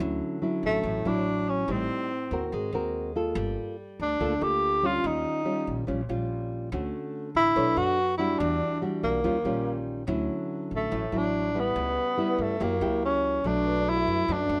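Sunny and relaxed, this bossa nova fragment puts an intimate, breathy tenor saxophone up front from 0.7 s, its subtone melody carrying vibrato and scooped notes, over thumb-plucked nylon-string guitar with audible finger squeak and a woody, thumpy pizzicato upright bass, while a natural-sounding baby grand piano with short sustain slips in behind them at 13.7 s, in light reverb.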